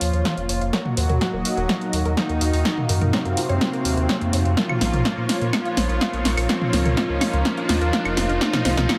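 An echo-heavy mix sits in a moderate spring reverb, giving this 9-second cut from a longer melodic techno track a driving, dramatic pull at 125 BPM in Bb minor. The whole passage is a build-up. A punchy analog drum machine sits up front, dry yet overdriven, with claves, hi-hat, a punchy snare and toms playing a drum fill throughout, touched with studio reverb and tape echo. A very quiet, layered electronic kick enters at 0.3 seconds beneath a dark, rumbling detuned saw bass that beats and pumps with sidechain. A smooth, evolving supersaw carries the melody through tape echo, while a thick, bright unison pad holds sustained chords with chorus and phaser, and a nostalgic, lo-fi tape-like pad warbles softly in the background. A full-bodied, wave-folded unison pluck plays arpeggios under a filter sweep, and a background riser enters at 0.5 seconds as the chords move from Bbm to Ebm, back to Bbm, and on to Cm.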